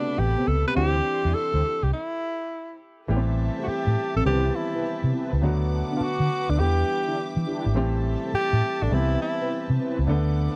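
R&B with a punchy, slick mood, this short cut from a longer piece moves at 103 BPM in 4/4 with a swung sixteenth-note feel. A breathy tenor saxophone carries the melody up front, its jazz-style phrasing marked by vibrato, scooped notes and a tape echo, while a foam-muted fingered electric bass sits forward with a round, amped tone. A polished grand piano supplies accompaniment, a detuned sawtooth synth brass adds chorused stabs, and a dark studio string section bowed sul tasto holds soft, intimate chords quietly in the background. After an opening on Am9 and D9sus4, the band stops from 1.9 to 3.1 seconds before a new section cycles through Am7, Cmaj7, Bm7/D and Em7. The sound is dry and close, in the manner of a 1970s studio session.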